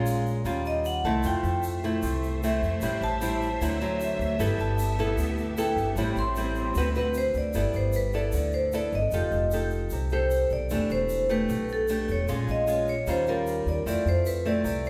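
Relaxed and sophisticated, this bossa nova excerpt in G major moves at 152 BPM in a straight 4/4 and is cut from a longer piece. A fingerpicked nylon-string guitar sits small and up front as accompaniment, paired with a woody, thumpy pizzicato upright bass on steel strings, while a grainy, bright egg shaker sounds distant, as if heard across a large room. The vibraphone, struck with medium hard mallets, carries the melody with a metallic, ringing tone, a slow motor vibrato and a boxy character, taking a solo through the opening half. A lush, bowed symphonic string section holds warm, smooth-topped sustained chords from 1.2 seconds until 7.5 seconds, where the second section begins. The harmony drifts through rich colours such as Fmaj7, Am7, D9 and G69, later reaching F9, Em7 and Bbm7, all set in the wet reverb of a church or concert hall.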